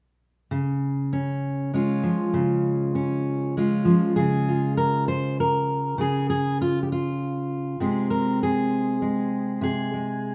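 Folk for solo fingerpicked steel-string dreadnought guitar, nostalgic and gentle in 6/8 at 66 beats per minute, sitting up front with audible finger squeak in a moderate studio reverb, moving from Db to Ab/C at 7.8 seconds and running from 0.5 to 10.3 seconds as a cut from a longer piece.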